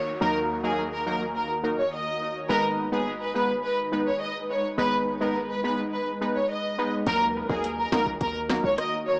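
A straight dancehall pulse in four carries this hypnotic, bouncy excerpt, though the electronic afro-pop drum kit, with its deep kick, sharp snare, rim click and metallic hats, only arrives at 7.1 seconds for the closing stretch. Before that, a boomy, sine-based 808-style bass with a noise layer sits underneath, while a punchy, brassy synth stab with chorus and dub echo supplies accompaniment from 0.2 seconds. Over the top, a lush, intense studio violin section carries the melody with vibrato, treated with dub echo and sitting up front in the mix. An ethereal, airy pad holds sustained chords throughout, its ensemble chorus and built-in reverb breathing with sidechain pumping, as the harmony moves between E-flat minor and A-flat minor. A very quiet downlifter and impact frame the start and the end, and the whole piece has an echo-heavy, small-speaker character with light digital ambience.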